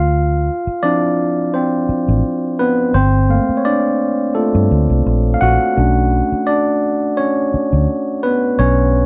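Smooth and late-night, this short R&B and neo-soul excerpt moves at 85 BPM in 4/4 with a light swing on the sixteenths, cut from a longer piece. A bright, clean tine electric piano carries the spotlight as a solo throughout, sitting direct and up front over chords that shift from Dm9 to Gm9 at 2.9 seconds and Bm9 at 5.8 seconds. Beneath it, a vintage foam-muted fingered electric bass sounds dark, round and punchy, with an amped edge, all in a moderate studio reverb.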